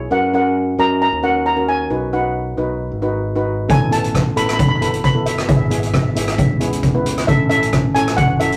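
A straight 4/4 calypso groove at 134 BPM carries this sunny, carefree excerpt, where a shimmering lead steel pan played with medium rubber sticks sings the airy high melody over a close-miked, dry double-seconds pan filling out the chords from F# through B, Asus2 and E/G# to A, a growly, punchy fingered electric bass anchors the low end, and a street-band drum kit with hi-hat, a boomy kick and rim click joins at 3.7 seconds, all set in a small, wet room with the rough tube-saturated character of a rehearsal-room recording.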